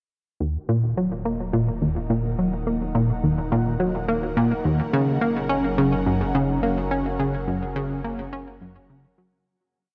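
Hypnotic and mysterious, this short, complete piece of ambient, sequencer-driven space music moves at 106 BPM in a straight 4/4 and sits in Eb minor, shifting from Ebm to Gb at 4.9 seconds. Up front from 0.4 seconds, a punchy, funky analog bass with a plucky filtered attack repeats a five-step sequence that drifts against the bar, its sawtooth, square and sine tones shaped by ring modulation and wave folding, and trailed by delay and shimmer reverb. Beneath it, a round, deep analog bass holds the root on low Eb1 to Gb1, its triangle-and-sine tone dark and nasal, colored by transformer saturation. A swirling, detuned analog pad enters at 1.3 seconds with slowly shifting sustained chords, its slow attack and long release colored by phaser, chorus and shimmer reverb. The pad fades in, then fades out toward the close, all within a huge, wet space and a worn, warbling cassette quality with drifting pitch.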